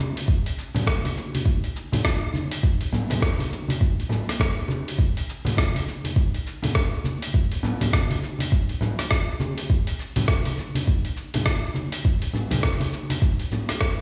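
A deep, layered electronic kick drum sits up front in this mystical downtempo groove, carrying a small-room tone from being re-recorded. Behind it, a gritty, compressed soul sampler-style kit adds cabasa, hi-hat and rim click with a swung sixteenth-note feel, while bright acoustic congas and bongos keep a large-room sense of space. The whole short passage, cut from a longer piece, is wrapped in a recital-hall reverb and the ambience of playback over a big sound system in a bare room.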